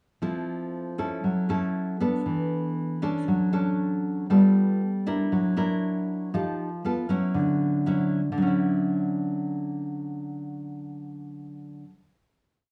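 A straight, even 4/4 pulse carries this complete bossa nova piece for solo nylon-string guitar, which plays from 0.2 to 12.0 seconds with thumb bass and syncopated plucked chords. The mood is sophisticated and breezy. The fingerpicked guitar sits up front with a full-bodied, deep classical tone, and a finger squeak adds a close, human touch. Its harmony moves through rich colors, from Fmaj7 and F#m7 to E7sus4, G9 and F#aug7, then passes through F9 before settling on a Dmaj9. That closing chord arrives at 7.4 seconds and rings out to the end. A moderate studio reverb blended with a small room's ambience gives the instrument a gentle sense of space.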